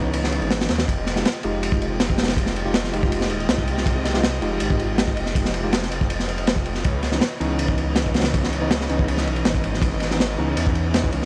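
Dark and frenetic, this 161 BPM drum and bass and jungle excerpt in F minor drives a crunchy, saturated breakbeat kit with punchy kick, medium-tuned snare and dusky ride cymbal up front from 0.1 seconds, under a thick, beating detuned saw bass, worn tine electric piano stabs trailing dub echo, and a lush bowed symphonic string section sustaining Dbm9 and Fm9 chords in the background, all framed by a dry, gritty hardware sound with vinyl crackle.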